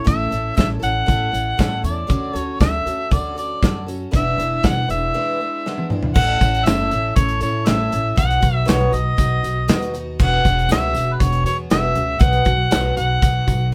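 An open-road, jangly folk rock and heartland rock excerpt at 119 BPM in E mixolydian, where a mellow, up-front harmonica carries the vintage pop-style melody with light vibrato over a bright, shimmering, octave-doubled picked twelve-string acoustic guitar. A woody, dark pizzicato upright bass and a natural country drum kit with a tight kick and medium-tuned snare hold the straight 4/4 groove, joined by a very quiet, jingly tambourine. The band plays live in one room with light reverb, and a break at 5.1 seconds brings a drum fill at 5.6 seconds before the second section begins at 6.2 seconds.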